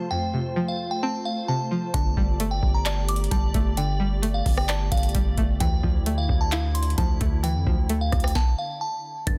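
A delicate, tinkling synth bell melody opens this brooding trap excerpt at 131 BPM in a half-time feel, over a twangy, string-like resonator pluck with chorus and filtering and a glassy, ethereal FM pad moving from F to Gsus2 and then Dmadd9. At 1.9 seconds a booming analog drum machine with a deep kick, crisp snare, claps, rim clicks and metallic hats arrives up front alongside a punchy, heavy 808-style bass. The dark groove halts at 8.4 seconds before a very quiet electronic impact lands at 9.3 seconds, all within a dense, heavily limited mix.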